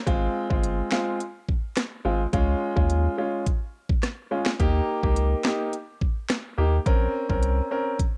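A bouncy, summery dancehall groove at 106 BPM in Ab major opens at 0.1 seconds with a clear, up-front grand piano pumping through chords of Ab6, Db, Eb and Bbmadd9, a round, deep sine sub bass with a fast attack and long sustain, and an electronic island pop drum kit of knocking kick, sharp snare, crisp hi-hat, rim clicks and finger snaps, the piano and drums both carrying a tape-softened cassette character in a dry, home-recorded sound.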